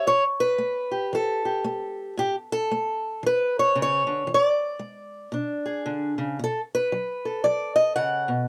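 A fingerpicked old ladder-braced acoustic guitar sits up front, its woody, boxy tone and tired old strings giving this short cut from a longer acoustic country blues piece a gritty, rollicking character. Playing solo at 114 BPM in 4/4 with a loose swing on the eighth notes, it spans from A2 up to F#5, moving from A7 to E7 at 4.3 seconds and onto a B7 at 6.4 seconds. A moderate booth ambience surrounds the guitar.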